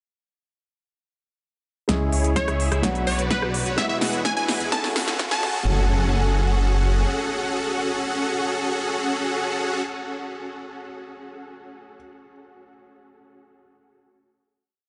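Huge, bright supersaw chords pulse up front through a filter sweep in this powerful, anthemic festival progressive house piece in F# minor at 127 BPM, driven by a thick, saturated detuned saw bass, a punchy overdriven kick and crisp-hatted drum kit building from 1.9 seconds to a final hit at 5.7 seconds, with a dark, mellow grand piano holding chords until 12.0 seconds, a catchy plucky phaser lead, a very quiet riser and impact, and a dreamy mix soaked in an 8.4-second ambient reverb.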